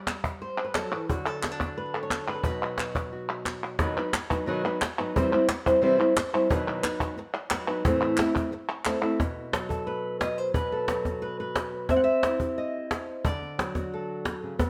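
A moderate stone-room reverb surrounds this passionate, mournful flamenco fragment, cut from a longer piece, where an up-front, fingerpicked flamenco guitar with fresh strings and a touch of tape echo carries the melody across a broad range. Beneath it, a woody cajon played with soft hands adds faint snares, while crisp, close and dry palmas hand claps join at 0.1 seconds and drop out at 9.2 seconds, leaving guitar and cajon to close the final stretch.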